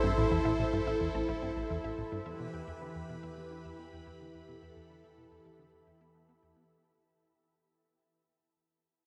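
A swirling, detuned analog pad drenched in phaser, chorus and shimmer reverb leads this cosmic, expansive fragment of sequencer-driven space music at 108 BPM, moving from Am to Em over a punchy, funky analog bass riff with delay, a round sine sub bass, faint bright unison pluck arpeggios and a bubbling, resonant stepped-filter texture in the background, all set in a dark, huge wet reverb as the bass and sub bass fade out across the 6.7 seconds.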